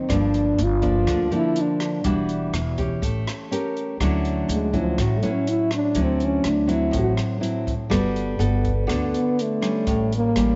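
A mellow French horn carries the melody throughout in a soft-attacked, classical style, leading this wistful, smooth bossa nova fragment at 123 BPM in 4/4. A dark, thumb-plucked nylon-string guitar sits up front in the accompaniment, while a woody pizzicato upright bass and an airy, polished small-room jazz kit of hi-hat, rim click and boomy kick support it through a progression that moves from Gm7 through Em9 and A7b9 to Dmaj9, D9 and Gmaj9. Light reverb and studio ambience frame the sound.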